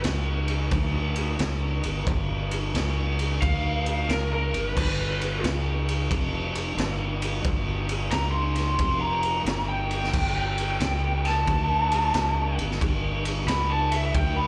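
Swaggering, gritty blues rock power trio with a southern rock lilt, this excerpt from a longer piece swings at 89 BPM in 4/4 as a growly, punchy fuzz bass and a boomy, saturated garage drum kit with dark cymbals and a pumping small-room sound drive from the start, before a lo-fi, overdriven lead guitar with slapback echo enters at 3.4 seconds for a picked solo, all heard as a live club gig through the venue's PA.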